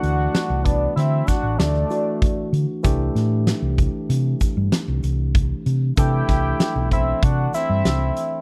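A hollow, nasal lead voice with an added fifth and chorus opens this brooding, intricate fragment of progressive instrumental band music, carrying the melody up front at 96 BPM in an uneven 5/4 with a straight feel. Beneath it, a mellow flugelhorn in a classical style with light vibrato sings a second line in a lower register. A barky tine electric piano, bright and clean through a combo amp, supplies the accompaniment as the harmony moves from D7 to Cmaj9 at 2.8 seconds. The dark, round, amped tone of a hollow-body short-scale bass and a big acoustic rock kit, with its fat snare and punchy kick in a natural big-room sound, sit prominently at the front of the mix. A grainy egg shaker joins at 0.7 seconds, distant in the background, and the whole passage has a dry, close 1970s-style studio sound with light reverb.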